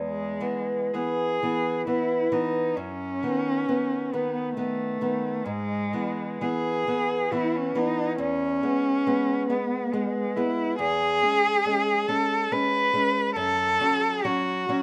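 A bowed cello and a fingerpicked nylon-string guitar begin together in this serene, romantic duo, a short fragment cut from a longer piece. The cello carries the melody up front, its soft attack, expressive vibrato and gliding portamento giving the single player a tender, singing voice. Beneath it, the small acoustic guitar sounds warm with fresh strings as it provides the accompaniment, also placed close to the listener. The music moves in a gently flowing 3/4 with free rubato, somewhere between 54 and 72 BPM, settling in E major before shifting toward C# minor at 10.8 seconds and closing on F# minor at 13.4 seconds. Recorded outdoors with a touch of light reverb, the whole passage feels intimate and warm.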